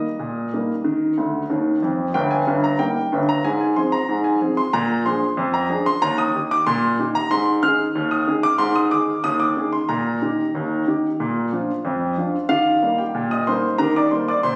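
Caught on a phone in the room with a club-like reverb and compression, this cheerful, jaunty ragtime fragment in Eb major moves at 93 BPM in a straight 2/4, carried by a lone upright piano that sounds woody, intimate and up front, with audible action noise and long sustain, spanning a broad range and dropping in a polished fill from 1.2 to 2.1 seconds before shifting to a new strain at 12.5 seconds.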